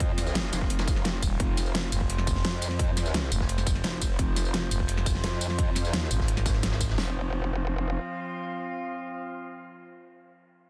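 A wobbling, saturated growl bass sits up front in this tense, futuristic dark technical drum and bass drop at 172 BPM, joined at 1.2 seconds by a thick FM growling bass, over two layered electronic dubstep kits with a punchy kick, huge snare and metallic hats, a mid-forward vintage acoustic kit in the background, and an eerie, nasal inharmonic drone that holds sustained chords until 10.1 seconds in a dense, heavily limited mix.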